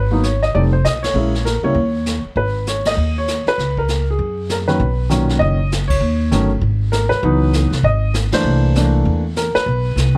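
A swung 4/4 pulse at 197 BPM drives this late-night, moody jazz piano trio excerpt, cut from a longer piece, set first in G# minor and turning to B major at 4.8 seconds. A baby grand piano carries the melody, up front with a natural tone and short sustain. It moves through chords such as G#m9, Bmaj7 and C13. An upright bass played pizzicato on steel strings sits close and sounds woody and dark, holding the low end from the opening. A vintage brush kit enters at 0.2 seconds and stays quieter, distant and roomy with a rolled-off top, a tight kick and a medium-tuned snare. It also uses hi-hat, ride and crash cymbal. The whole band hits accents at 1.0, 2.8, 5.9 and 8.3 seconds, and the dry sound carries little reverb.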